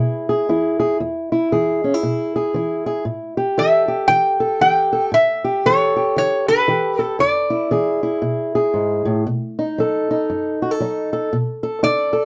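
Rollicking and swaggering, this short excerpt of acoustic country blues rides a loose swing, with a fingerpicked old ladder-braced acoustic guitar carrying the accompaniment throughout in a dark, woody, boxy tone from its old strings, moving from E through A7 and E7 to B7. A lap resonator guitar, played with slide and fingerpicks, enters at 3.6 seconds with a bright, metallic, nasal melody, drops out at 8.2 seconds and returns near the close. Both guitars sit up front in a moderate studio reverb, with a dusky, mellow production.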